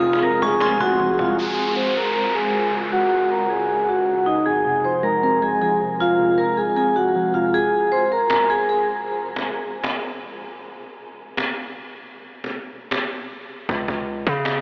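Over a half-time trap groove, this menacing, eerie hip hop piece puts a ringing, up-front vibraphone melody played with medium mallets, low-passed and delayed, ahead of a tinkling FM tine bell, muted felt-like synth keys, an ethereal phased pad and a heavy, distorted 808-style bass that drops out at 1.4 seconds and returns near the end; a woody, distant cajon comes back for the break at 7.5 seconds, an electronic downlifter sounds during a filter sweep, and the dreamy mix is soaked in huge reverb with an AM-radio tone.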